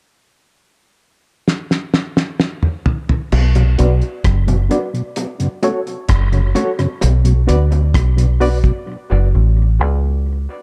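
A round, punchy dub bass sits up front in this heavy, meditative 65 BPM dub reggae fragment in B minor, entering at 3.3 seconds after a cloth-damped drum fill and carrying on alone through the break once the fat-snared, tight-kicked kit stops at 8.9 seconds. Around it, low-tuned bongos with tape echo, a mellow tonewheel organ with chorus vibrato and slow rotary speaker, and barky, lightly overdriven reed electric piano stabs with fast tremolo fill out a Bm to F#m progression. A filter sweep runs through the second half, and the dark production carries a light small-room reverb.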